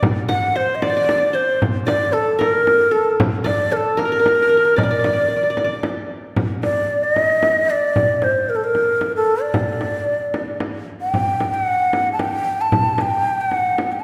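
Arabic maqam ensemble music in D maqam hijaz, melancholic and soulful, moving at 76 BPM in a straight 6/8 felt in dotted quarters. A breathy ney carries the melody from 0.3 seconds, its end-blown reed cane tone sitting close and up front, expressive with vibrato and tongued notes between A4 and A5. Beneath it, a plectrum-plucked qanun adds a second line from A4 to F#5, its triple strings giving a bright-edged shimmer before it drops out at 6.6 seconds, just after the passage turns to a new section. A small frame drum keeps the percussion close and dry until 13.9 seconds. The ensemble sits in a church or concert hall with a long, wet reverb tail, lending the fragment a spacious air.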